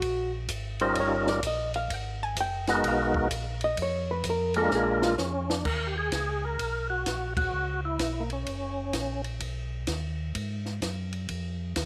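Soulful and smoky, this swinging soul jazz organ trio fragment opens with a dark, clean hollow-body jazz guitar soloing until 5.1 seconds, while a round, mellow tonewheel organ carries the bass with slow rotary and chorus vibrato, a compact cocktail kit with dark cymbals, a high-tuned snare and a tight kick plays a fill just before the 5.7-second change, and a fat, lightly overdriven, percussive tonewheel organ with key click takes the melody from 0.8 seconds, all in a light reverb with a band accent at 7.3 seconds.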